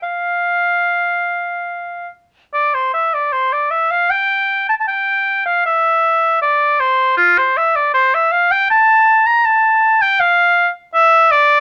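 In a rubato 3/4 at roughly 70-82 BPM, this short fragment of a baroque-style classical fantasia in F major has a radiant, dance-like lilt. A solo oboe, clear and vintage in tone, sits up front and plays alone for the full 11.6 seconds, ranging from F4 to Bb5, with a new section opening at 2.5 seconds. Light reverb surrounds the instrument, and the production leans dark and warm.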